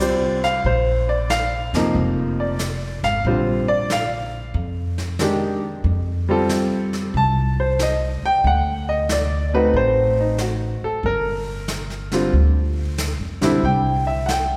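A jazz piano trio plays with a playful, warm swing in this short cut from a longer piece. A clear, smooth grand piano with a vintage character and short sustain carries the melody up front, ranging from C3 to A5 across the full 14.6 seconds. Beneath it, a woody, pizzicato upright bass with steel strings sits close and present, holding down the low end. A jazz kit played with brushes adds an airy, polished texture of brushed snare and hi-hat over a boomy kick. The harmony moves from Fsus2 through Bbadd9, Fadd9 and D7b9 to Gm before landing on C. The trio sounds as if it is set in a church or concert hall, with a wet, lingering reverb that gives it a spacious glow.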